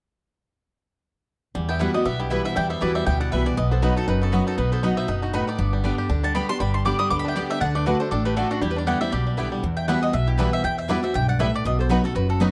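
A dry, close 1970s-style studio sound frames this driving, haunting bluegrass excerpt in E minor at 238 BPM with a swung feel, where a bright, double-strung mandolin carries the melody over woody pizzicato upright bass and full-bodied picked dreadnought guitar up front, twangy banjo arpeggios touched with tape echo, round mandolin stabs, and a nasal, metallic slide resonator guitar weaving a second line in the background, all entering between 1.5 and 1.8 seconds and moving through Emadd9, B, G and D.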